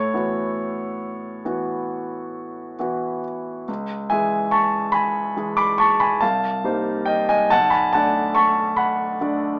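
Mysterious and nocturnal, this brief fragment of impressionist classical solo piano drifts in a rubato 9/8 at about 47 BPM, its up-front, intimate concert grand ranging from deep bass to a polished, long-sustaining treble with audible action noise, moving from A6/9 through C#m7 and Cm7 to Bm7 under light reverb and a small-speaker sound.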